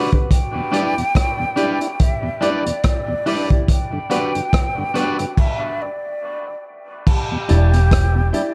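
A slow, swung dub reggae groove at 71 BPM in E minor, hypnotic and heavy, features gritty, saturated breakbeat drums up front, with tight kick, hi-hat, rim clicks and a rolled-off crash, while a twangy, slightly broken-up electric guitar, worn baby grand piano stabs with long sustain and a full, lightly overdriven tonewheel organ in the background, each trailed by dub echo, support a breathy, expressive flute melody with vibrato, also echoed, over Em7 and Gmaj7 chords, the guitar dropping out at 5.2 s before a stop from 5.4 to 7.1 s, after which a round, foam-muted bass enters on E1 at 7.5 s in this dark production with light reverb.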